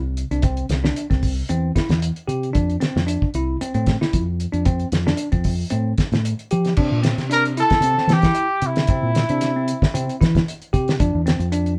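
Joyful and hypnotic, this afrobeat excerpt from a longer live-room performance sets a round, punchy fingered electric bass and a cloth-damped, thuddy drum kit with a fat snare, tight kick and dark cymbals up front under bell-like tine electric piano arpeggios, before a mellow trumpet with light vibrato and scooped notes enters at 7.3 seconds for a brief, roomy solo melody over the C chord in light reverb.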